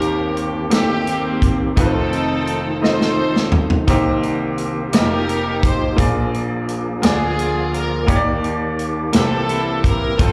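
A slow, soulful and uplifting gospel cut in 6/8 at 57 BPM opens with a bowed string section singing the melody in a reedy gut-string tone with slapback echo, a clear baby grand piano accompanying with the same echo, a fat, lightly overdriven tonewheel organ sustaining chords through a slow rotary speaker with chorus vibrato and key click, and a punchy, up-front acoustic drum kit that plays a fill from 2.8 to 3.9 seconds, the band heard live through a club PA with moderate room reverb as the harmony moves from Cm7/Eb through F7 and Bb7 to Ebmaj7 and C7.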